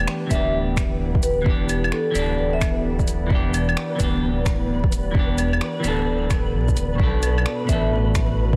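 Swung garage drums of claves, finger snaps, hi-hat and shaker ride over an overdriven soft electronic kick in this nocturnal, ghostly future garage excerpt, where a deep, rumbling detuned saw bass and a clean semi-hollow electric guitar with analog delay pump under sidechain beneath a warbling, nostalgic tape-like pad with chorus and phaser, a grainy, flickering texture sits in the background, and a dark, ringing vibraphone carries the melody from 0.3 to 2.7 seconds, all under vinyl crackle and a dense, heavily limited master.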